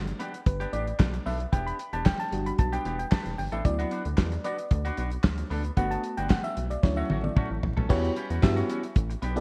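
A mellow FM electric piano takes the lead in this late-night, funky early-eighties boogie funk excerpt, soloing until 7.9 seconds over a bouncy, rubbery square bass, a clean, bright semi-hollow electric guitar riff with lush chorus, and a dry, damped 70s drum kit with a fat snare, tight kick, handclaps and gated reverb that plays a fill from 6.8 seconds, all set in a bright 1980s-style digital production with vinyl crackle.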